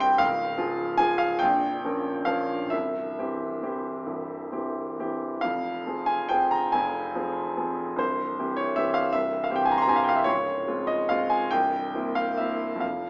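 The recording has a small-speaker quality, set in a moderate recital hall whose reverb lingers for about 1.5 seconds. A romantic classical nocturne unfolds on solo grand piano, wistful and melancholic in mood, moving in 6/8 with free, rubato phrasing. The piano sounds clear and open, placed up front, with long sustain that lets each harmony ring into the room. Its range stretches from a deep Bb0 up to C6, giving the passage both dark low weight and brighter upper reaches. The harmony drifts from Db through Bbm, C and Fm, then colours toward a Dbmaj7 at 10.3 seconds before settling on C7 near the close of this short fragment of a longer piece.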